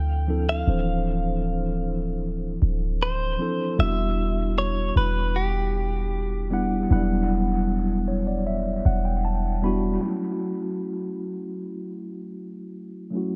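A clean, picked electric guitar carries the melody over a mellow tine electric piano and a deep, boomy 808-style bass from the start of this moody, sensual contemporary R&B excerpt, with dub echo on the guitar and on the low-pass-filtered keys. As the chords move from Dm7 to Em7, the electric piano plays a fill at 7.7 s, the guitar drops out at 9.2 s, and when the bass stops at 10.0 s the piano carries a filter sweep alone over F#m7. The echo-heavy mix has light reverb, with the compressed, direct-recorded guitar set beneath the up-front keys and bass.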